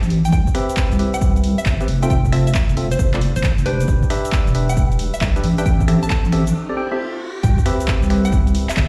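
A swung 4/4 two-step groove at 135 BPM drives this soulful, bouncy UK garage cut in C major, where a deep, wobbling bass sits up front under a punchy analog drum machine of finger snaps, handclaps, hi-hat and shaker and a tape-warm electronic kick, while a detuned square-wave pluck and a dark, organ-like stab, both with tape echo, ride a Cmaj7, Fmaj7, Em7, Am7 progression, a filter sweep moves over the stab, and a riser and sub drop entering at 5.4 seconds lead through a break into the drop and impact at 7.4 seconds, heard as if played on a big sound system in a bare stone room.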